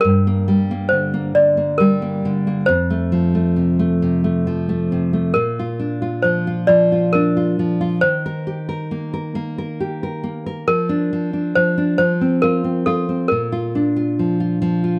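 A clanky, bell-like toy piano carries the melody up front, its plastic hammers and slightly out-of-tune ring giving this gentle children's lullaby an innocent, homemade charm. Beneath it, a fingerpicked nylon-string guitar with fresh strings supplies a full-bodied, deep classical accompaniment, sitting just as close in the mix. The piece moves in an unhurried 6/8 at 45 beats per minute counted in dotted quarters, settled in Bb major. Its chords drift from G minor through F, Bb and Eb before returning home to Bb. Near the end, at 14.6 seconds, the guitar adds a brief fill. The sound is dry and intimate, like a close 1970s studio recording with studio reverb, and the passage is cut from a longer piece.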